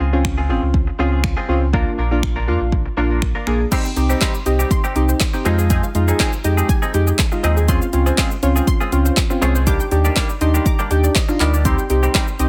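A straight 4/4 dance-pop groove at 121 BPM is set by a deep house drum kit placed up front, with a deep kick, woody snare, dark hi-hats, finger snaps, handclaps, shaker and crash cymbal in a layered, produced electronic blend. Beneath it, a sub bass with an added octave sits full and sine-like with a fast attack and sustained notes, pumping against the kick through sidechain. Analog keys carry the accompaniment in round square and sawtooth tones with a filter sweep and chorus, while a bright, twangy clean electric guitar, recorded direct and compressed, picks a riff bathed in lush chorus. At 3.7 seconds a mellow, detuned sawtooth pluck joins in the background with arpeggios treated by chorus, phaser and delay, and the keys add a fill at 10.2 seconds. The chords move through Dbmaj7, Bb, Cm, Fm7 and Ebmaj7 in a dry, close mix, giving this cut from a longer piece a carefree, summery mood.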